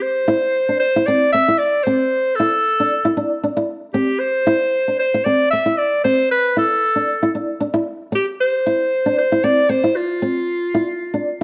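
Highlife in a joyful mood, this short excerpt puts a bright, punchy clarinet up front with a vintage, jazz-style solo melody and light vibrato, while a dark, small-sounding fingerpicked nylon-string guitar joins at 0.3 s to accompany over shifting Cadd9 and Dsus2 chords that settle on C, all set in a wet spring reverb and studio ambience.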